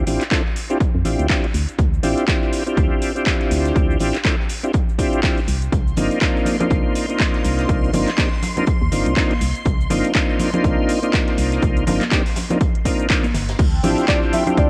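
A swung 122 BPM deep house groove is driven by a punchy, overdriven electronic kick up front, an overdriven house kit with metallic hats, claps, shaker and crash, and a very quiet acoustic jazz kit with a high-tuned snare, all in a deep, hypnotic mood over Dm11 and Cm11 chords. A smooth tonewheel organ plays stabs through a slow rotary speaker with sidechain pumping and tape grit, over a hollow, percussive FM bass with a dark, organ-like tone. Shimmering vintage string-machine violins enter in the background at 5.7 seconds, with ringing, close congas soon after; at 13.6 seconds the drop brings in a bright, detuned analog pad, and a velvety sawtooth lead with tremolo appears at 14.1 seconds before this cut-off fragment of a longer piece ends amid light reverb and faint mains hum.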